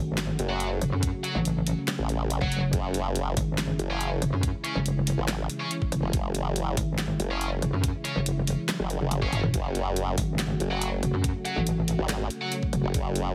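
A metallic, saturated FM wobble bass leads this aggressive, chaotic heavy wobble dubstep cut from a longer piece at 141 BPM in a half-time 4/4 feel in F# minor, joined by an up-front, detuned, formant-filtered sawtooth wobble bass, an up-front, tape-warm dubstep kit with a huge snare, bright hats, handclaps and toms, a knocking electronic kick, a lush, thick unison pad with phaser and sidechain pumping, and tight, double-tracked distorted guitar stabs with digital delay, all moving from F#m to C#m/F# at 2.7 seconds before a drum fill at 8.7 seconds returns to F#m at 9.5 seconds, in a dry, heavily compressed radio-style mix.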